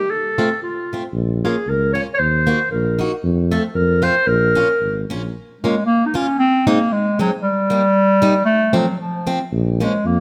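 A warm, roomy clarinet opens this jolly, bouncy alpine folk fragment, playing the melody in a classical style at the front of the mix. A bright, boxy acoustic guitar joins almost at once with picked, swing-style accompaniment, and a dark tuba enters at 1.1 seconds with a soft attack, light vibrato and a smooth top to carry the bass line. The dance-band feel moves at 114 BPM in 2/4, with a gentle swing on the eighths and a touch of rubato. Set in B-flat minor, the harmony moves through E-flat minor and F before the second phrase begins at 5.3 seconds, where the tuba drops away and the chords shift toward A-flat and E-flat. The tuba returns on B-flat minor just before the clip, cut from a longer piece, breaks off, all captured by close, detailed microphones with light reverb.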